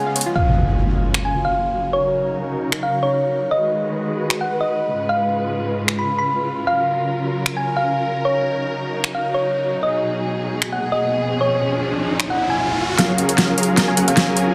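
Lush and playful, this future bass clip at 152 BPM in a half-time feel with a light swing sets a round, tine-like synth pluck melody over up-front, expressive bowed strings under a filter sweep, backed by an overdriven big-room drum kit with a huge snare, metallic hats and finger snaps, an electronic impact at 0.4 s, a soft round pluck in the background, and a riser that leads into huge detuned supersaw chords and a drum fill at 13.0 s, all moving through F#maj7, D#m7, G#m7 and C#7 in a dense, heavily limited mix.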